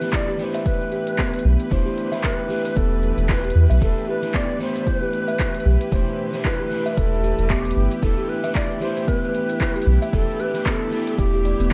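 A dark production with light reverb and a digital ambience frames this short excerpt of organic downtempo in E minor, moving at 114 BPM in 4/4 with a 16th-note swing and a meditative mood that rests on a single E minor chord. A breathy, low wooden flute in the Native American style carries the melody between G4 and D5, its crisp chiff and vibrato trailed by digital delay, while a buzzing kalimba plays woody, ringing arpeggios that also echo through delay. An electric guitar at the edge of break-up adds picked accompaniment with a vintage 12-bit sampler grit and sidechain pumping, and a tense, string-like drone in the background holds sustained chords with detuned sawtooth layers, ring modulation and its own reverb. The deep house drum kit brings handclaps, metallic hats and shaker, overdriven and re-recorded in a large room, joined at 0.1 seconds by an overdriven electronic kick. At 1.5 seconds a round analog bass enters up front, its sine-like low end pulsing with sidechain pumping.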